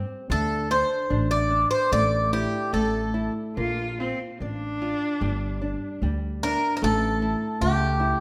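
Fado-style ballad excerpt, longing and passionate, moving in a loose rubato two-beat feel. A small, woody nylon-string guitar fingerpicks the accompaniment over dark, thumpy pizzicato from a gut-strung upright bass, while an up-front picked twelve-string guitar carries a shimmering, octave-doubled melody, falling silent from 3.3 s until 6.4 s as a single bowed cello sings a rich, focused second line with vibrato. The ensemble sits in a wet recital hall reverb.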